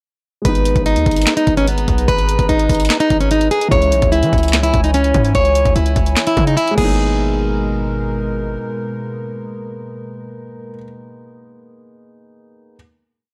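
A fingerpicked, plugged-in old ladder-braced acoustic guitar carries a boxy, looping melody with finger squeak and tape echo, up front in this eerie, melancholic half-time trap piece at 147 BPM in G# minor, moving from G#madd9 to C#m and back. Beneath it, a trap kit supplies a bouncy beat with knocking kick, sharp snare layered with clap, bright sixteenth-note hats and fast rolls, while a punchy, heavy 808-style bass plays long sliding sub notes that follow the kick. A dark grand piano with audible action noise holds close-voiced chords and a detuned, moody analog pad with chorus sustains beneath them. After the hook ends at 7.0 seconds, the guitar and bass fade out by 8.6 seconds and the pad by 10.8 seconds, while the piano rings on until 12.8 seconds in a dry, gritty hardware mix with transformer saturation.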